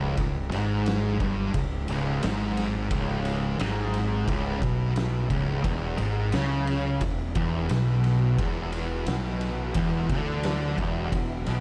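Two distorted fuzz guitars and a growly, overdriven fingered bass open this sludgy, heavy stoner and doom metal excerpt at 88 BPM in C# phrygian: one guitar picked, compressed and up front, the other sitting in the background. At 0.2 seconds they're joined by an oversized low-tuned acoustic kit with a punchy kick, fat snare and ride cymbal, all saturated, gritty and rolled-off on top. At 7.0 seconds, as the harmony moves from C#m to E5, a very quiet vintage string machine enters with lush, soft-attack sustained chords colored by phaser and ensemble chorus, all set in a dark production with light small-room ambience.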